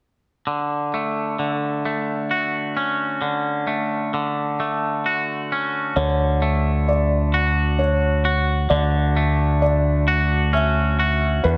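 In a straight 6/8 pulse of dotted-quarter beats, this hopeful, euphoric rock fragment opens at 0.5 s over a Dmaj7 chord with a clean, twangy electric guitar picking up-front arpeggios through slapback echo, and at 6.0 s it is joined by a mellow, felt-muted upright piano arpeggiating softly in its own slapback and a punchy, overdriven fingered electric bass growling low, all bathed in a lush hall reverb that gives it a big arena sound.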